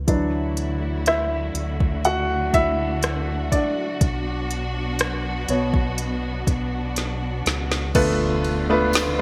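A clear, polished baby grand piano opens this short excerpt from a longer pop ballad, carrying a solo line up front over a round, punchy fingered electric bass at a slow 61 BPM in straight 4/4. Lush bowed strings with vibrato and portamento sit distant behind them, holding sustained chords as the harmony moves from Dadd9 to Bmadd9, giving the mood an emotional, heartfelt pull. A smooth R&B drum kit with a soft kick, woody snare and silky hats, plus crash, ride and rim click, is placed close and bathed in gated reverb, and it plays a fill from 7.0 to 8.0 seconds. At 8.0 seconds the music shifts to a Dm6 chord as a very quiet, jingly tambourine enters and an electronic impact sounds in the background. The overall sound is bright and glossy in a 1980s digital style, with light reverb and a sheen of subtle chorus on the piano.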